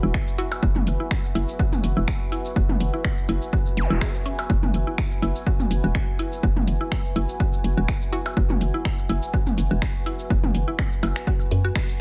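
A swung 4/4 pulse drives this sparse, clinical minimal techno excerpt, anchored by a punchy, up-front electronic kick and a layered house kit of cabasa, finger snaps and tape-warm hi-hats, all set in studio reverb. A hollow, knocking FM bass bounces underneath with a fast attack and mellow decay, pumping with sidechain compression, while a woody, round mallet-like synth pluck plays a riff through chorus and tape echo. Behind them a deep, dark ambient pad of detuned sawtooth unison with a sine sub octave sustains a moody bed, breathing with sidechain pumping and its own reverb. Electronic percussion blips and toms, re-recorded in a small room, scatter through the groove with tape echo, and a nasal, detuned square pluck sits in the background for brief moments near 0.4 and 8.1 seconds. A single electronic zap flickers at 3.8 seconds, digital ambience surrounds the mix, and the band lands a final accent at 11.8 seconds.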